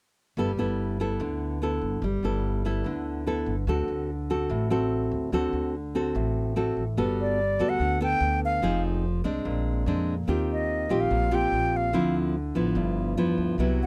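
A dry, close recording with light reverb and a 1970s studio feel frames this relaxed, breezy bossa nova, cut from a longer piece and moving at 145 BPM in 4/4 with a straight feel in G major. A bright, full-bodied nylon-string guitar, fingerpicked and up front, carries the accompaniment from the start. A woody pizzicato upright bass supports it underneath. The opening passage rests on G69 and D7 before the harmony opens up after 7.0 seconds, moving through Gmaj9, Fm7, Bb9, Eb69 and Dm9 to settle on G6. At 7.2 seconds a breathy silver concert flute enters with the melody, close-miked and expressive, its straight, tongued tone sitting up front in a high register.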